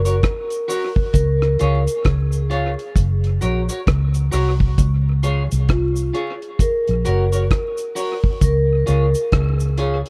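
A mellow vibraphone played with soft mallets opens the recording together with a dark, round, foam-muted electric bass, setting a laid-back roots reggae groove at 66 BPM in Db major with a swung sixteenth-note feel. The vibraphone carries the melody in a metallic, ringing tone with a slow motor vibrato and tape echo, heard in a boxy small room. The bass sits up front with an amped, punchy weight, while a deep, dry drum kit with a tight kick, hi-hat and rim click stays smooth and close. From 0.1 seconds a clean, picked electric guitar adds accompaniment dressed in lush chorus and tape echo, and a quiet cabasa provides a small-room shaker texture in the background. The harmony moves between Gb and Db across this short, warm cut from a longer piece, with a dark production, little reverb and a layer of vinyl crackle.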